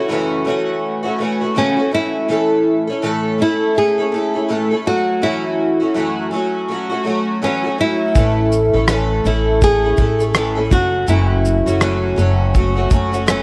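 Carefree and easy-going, this acoustic pop excerpt moves at 82 BPM in 4/4 with a gentle 16th-note swing, as a bright, fingerpicked flamenco guitar with fresh strings carries the melody over a boxy, shimmering, octave-doubled twelve-string acoustic guitar that is picked, double-tracked and sits up front. The harmony moves between F#m7 and A chords, and at 8.2 s a woody pizzicato upright bass arrives alongside a cloth-damped, thuddy drum kit with a tight kick, rim click, shaker and a rolled-off top. A moderate echo chamber reverb gives the whole a roomy, relaxed glow.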